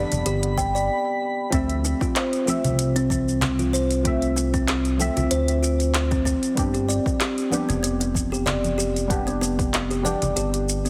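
A lightly swung 16th-note groove at 95 BPM in 4/4 drives this hypnotic, mystical organic downtempo cut in D dorian, with an organic electronic drum kit of handclaps, smooth hi-hat and shaker joined by bright, dry congas and bongos in the background and a deep, layered, tape-warmed electronic kick that arrives at 0.6 s. Up front, a woody, ringing kalimba plays arpeggios through tape echo over a smooth, dark sawtooth-and-square synth bass with tube saturation, while a soft, detuned chord stab with chorus, sidechain pumping and tape echo moves from G to Dm7 and back to G. A twinkling, sparkling granular texture with octave-up shimmer opens the piece and drops out at 0.9 s, all set in a moderate echo-chamber reverb with a heavily compressed, radio-like sound.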